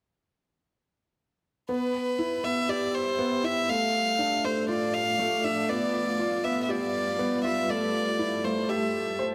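A lush hall reverb surrounds this luminous, hopeful electronica excerpt in C major at 120 BPM, where a felt-muted upright piano, mellow, intimate and vintage-toned, sits up front with a delayed riff from 1.7 seconds. A rich violin, bowed sul tasto by one player with a soft attack and a pure, floating tone, carries the melody through delay over chords moving from Cmaj7 through F6 and G7 to A7(no3). From 2.5 seconds a cloudy, detuned granular pad holds sustained chords in the background, its slow attack and long release blurring into its own reverb.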